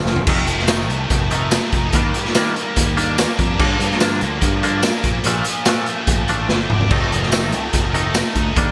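This upbeat, jangly indie rock excerpt opens with two electric guitar riffs: a high-gain, distorted guitar thick with ensemble chorus and delay sits up front, while a clean, twangy guitar with subtle chorus plays beside it. A growling, overdriven fingered bass supports them from below, and a raw garage drum kit enters with a fill at 0.1 s. The kit has a gritty, saturated, pumping small-room character, with a boomy kick, medium-tuned snare, dark cymbals, tambourine and toms. At a straight 145 BPM in 4/4, the harmony moves through F7, Ebmaj7, Gm7 and Bbmaj7 before returning to F7 at 6.9 s, just after a second drum fill. At that moment a very quiet, shimmering vintage string machine comes in with soft-attack sustained chords, and a faint, jingly tambourine follows at 7.3 s. The whole mix carries a glossy 1980s-style digital sheen set in a lush hall reverb.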